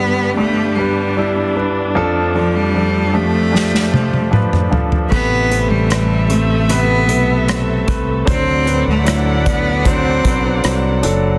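This melancholic pop ballad, cut from a longer piece, has a dense, heavily limited modern sound with light reverb and a small room ambience. A close, focused bowed cello with vibrato carries the longing melody over an intimate concert grand piano with audible action noise and deep bass, while a lush string section holds sustained chords with expressive portamento and a smooth top. An acoustic drum kit played with bundle sticks arrives at 3.6 seconds in the middle of a fill, its punchy kick and medium-tuned snare up front and the snare touched by soft clipping, as the piano adds a fill of its own. At 5.1 seconds a growly, bright fretless electric bass joins, direct and amped, as the harmony moves from G and Dm/F to Amadd9 and then D7.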